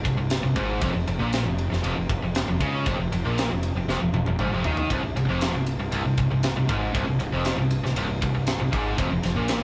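A rough rehearsal-room recording with warm saturation and a moderate booth ambience frames this dark, epic heavy metal excerpt at 118 BPM in straight 4/4, where two bright, picked distorted guitars, one of them high-gain, churn out low riffs in the background over a growly, punchy fuzz-overdriven fingered bass, while an up-front acoustic drum kit with a high-tuned snare, tight kick, ride cymbal and toms enters at 0.1 s and plays a fill from 3.9 to 4.9 s as the harmony moves between Fm/C and Fsus4.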